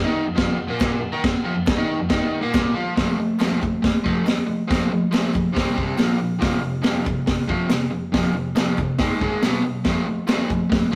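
Raw and swaggering, this garage rock piece drives along at 139 BPM in F mixolydian, led by an up-front riff on a crunchy, double-tracked, picked electric guitar. A vintage acoustic drum kit enters at 0.4 seconds with a punchy kick, high-tuned snare and dark, rolled-off cymbals, while a very quiet, hollow group handclap sits close and dry beneath. The rough rehearsal-room sound carries a moderate stone room reverb, and the music moves into a new section at 3.0 seconds.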